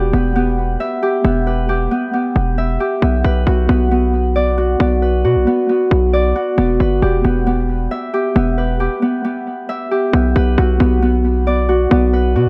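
Brooding and melancholic, this half-time trap cut at 135 BPM in B minor sets a mellow, ringing Celtic harp playing fingerpicked arpeggios through tape echo against a punchy, heavy 808-style bass with a sine body, a noise layer and a fast attack that decays, both parts up front for the full 12.5 seconds. The chords move from Em to Bm and back, with a break at 9.2 seconds before a new section lands on Bm at 10.1 seconds. Light studio reverb and an echo-heavy mix give this fragment of a longer piece a brooding air.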